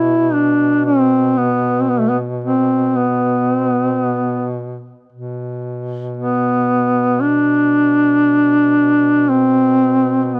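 A mellow duduk carries a longing, mournful melody from the opening second, with light vibrato, scooped notes and a smooth top, while a second duduk holds a low B drone beneath it, warm and soft in attack, with its own vibrato and scoops. This short fragment of a slow Caucasian folk lament moves in free rubato around 58 BPM in B phrygian, the melody sitting up front and the drone far lower in the mix. The sound is dry and close, like a 1970s studio take, touched by a small room reverb.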